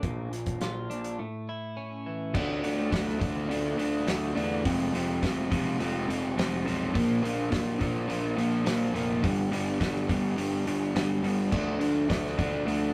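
A straight 4/4 pulse at 105 BPM drives this brooding, angsty quiet-loud alternative rock excerpt: a bright, clean twelve-string electric guitar plays up-front arpeggios over a growly fuzz picked electric bass and a loose, punchy indie drum kit with dark cymbals, a break arrives at 1.2 seconds, and the twelve-string stops at 2.4 seconds as a compressed overdriven electric guitar riff, with a sludgy distorted guitar riff behind it, enters at 2.3 seconds over chords moving from Dm through Fm, Bb and G, all in a rough rehearsal-room sound with moderate small-room reverb.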